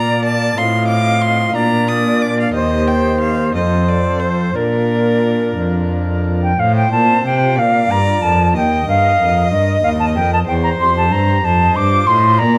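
In 6/8, this flowing, dance-like baroque-style sonata movement, taken from a longer piece, sets an expressive solo violin melody, rich with vibrato and portamento, against a pure, tongued flute second line that sits forward in the mix, while a nasal cornet solo stop on pipe organ with tremulant supplies the accompaniment and a smooth, even bowed cello carries the bass, captured with close, detailed microphones in a moderate recital hall.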